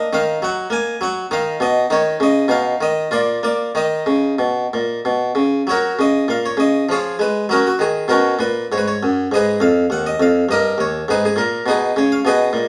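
A solo harpsichord, bright and airy with a single set of plucked strings, opens this radiant, dance-like baroque-style suite movement in triple time. Played up front with a flexible rubato, it shifts to a new tonal centre at 5.7 s and repeats its opening section. The instrument rings in a moderate stone room reverb, and the passage is cut from a longer piece, ending at 12.7 s.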